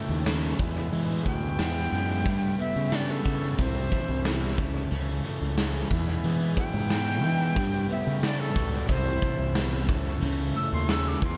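A straight 4/4 pulse at 90 BPM from a gritty, up-front garage drum kit with a punchy kick drives this hypnotic, kaleidoscopic psychedelic rock excerpt in A mixolydian, where round fuzz bass anchors a chord cycle through A, E, Gmaj7, Cmaj7 and A/C#. A double-tracked crunchy guitar riff with phaser and dub echo sits in the background beside buzzy vintage combo organ chords and a very quiet, shimmering tanpura drone, and a breathy, reedy jazz flute with vibrato and a crisp chiff enters at 1.3 seconds to solo through dub echo, all set in a small room within an echo-heavy mix.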